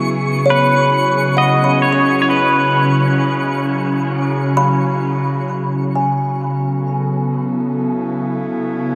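A detuned, morphing wavetable pad opens on a C#m7 chord, its chorus and filter sweep giving it an up-front, evolving glow, while a faint granular layer twinkles high above with an octave-up shimmer. At 0.5 s a pedal steel guitar enters with a short, twangy melody played with fingerpicks, its clean, compressed tone shaped by volume swells and slide and carried into a diffuse delay. A woody kalimba arrives alongside it, ringing out dark, smooth thumb-plucked arpeggios that carry on after the steel falls away. The sparkle stops at 5.5 s as the harmony moves to Aadd9, leaving the pad and kalimba to drift in three within a huge, wet reverb. The mood of this ambient excerpt is luminous and warm, a fragment cut from a longer piece.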